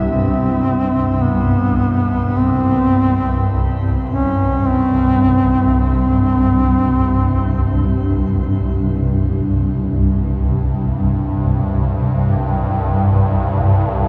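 Dark ambient drone in free time and C major, desolate and ominous, where a mellow, up-front duduk sings a folk-style solo melody with vibrato and scooped notes through shimmer reverb and tape echo until 8.1 seconds, over a swarming, tense, detuned granular drone low in the register and a very quiet, moody analog pad holding sustained chords, all cut from a longer piece and set in a vast cathedral reverb with a 5.5-second decay.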